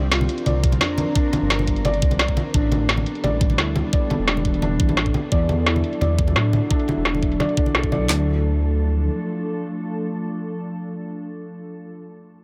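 A glassy, ethereal FM pad with chorus, a filter sweep and sidechain pumping opens this melancholic, rolling liquid drum and bass excerpt alongside a deep, beating detuned saw bass, while a felt-muted upright piano plays soft, mellow arpeggios through dub echo, an overdriven garage kit adds metallic hats, saturated congas bring soft hand percussion, and a layered drum and bass kit with knocking kick, woody snare and claps joins at 0.6 seconds. The drums and piano then fall away between 8.0 and 8.3 seconds, leaving the pad and bass to sustain the Dm chord that arrives at 8.1 seconds.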